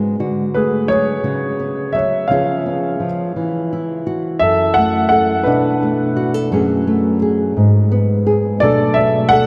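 A vast, echoing cathedral reverb surrounds this short cut from a reflective, heartbroken acoustic folk-pop ballad in F# minor, moving slowly at 57 BPM in a straight 6/8. A small, dark, fingerpicked nylon-string guitar sits up front with the accompaniment, joined at 0.5 s by an intimate concert grand piano carrying the melody with deep bass and audible action noise. The harmony shifts at 3.4 s from D and C#7sus4 toward F#m7, Bm7 and G#m.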